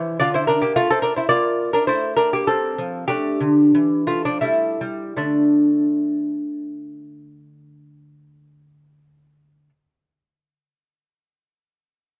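Closely miked with light reverb, this short fragment places a solo fingerpicked lute up front, its gut double strings, some doubled at the octave, sounding delicate and detailed. It's a grave, introspective baroque-style dance in D minor and 3/4, played with a free rubato between 76 and 110 BPM. The opening phrase slows from 0.5 to 5.2 seconds as it moves through Dm, Bb and Fadd9 to a suspended A7sus4 and then A5/G before a new phrase begins at 5.2 seconds.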